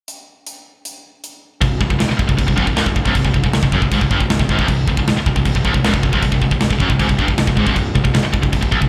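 Heavy metal with a dark, aggressive mood: a tight, up-front drum kit with bright cymbals opens alone before, at 1.6 seconds, a high-gain distorted guitar with slapback echo, a scooped guitar sitting in the background and a growly fuzz bass crash in, the guitars on a low riff, all heard through a live club PA with moderate reverb in this fragment cut from a longer piece.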